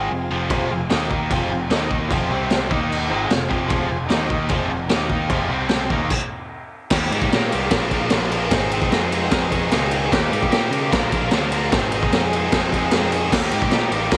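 A bright, double-tracked overdriven guitar riff sits up front with a splash of spring reverb in this gritty, swaggering garage rock excerpt, joined by a growling picked bass with its own overdrive. A raw small-room drum kit, with a high-tuned snare, punchy kick and saturated, rolled-off top, kicks in at 0.5 seconds, while a very quiet, reedy combo organ with heavy vibrato holds sustained chords over the opening Fm riff. After a sudden stop at 6.1 seconds, the band shifts to a broader Eb, Bb and Ab progression, and the organ drifts back in at 13.3 seconds.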